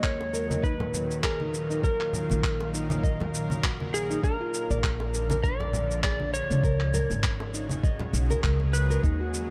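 A soft, tape-warm electronic kick and gritty, compressed handclaps with cabasa set a swung 100 BPM 4/4 groove, with bright bongos and congas in the background, beneath a woody pizzicato upright bass, full-bodied fingerpicked nylon-string guitar arpeggios with finger squeak and digital delay, a tense, nasal bowed-like drone with vibrato and sidechain pumping, and a slightly broken-up electric slide guitar melody with delay, giving this Eb minor organic downtempo excerpt a meditative, earthy mood in a dark production with light reverb.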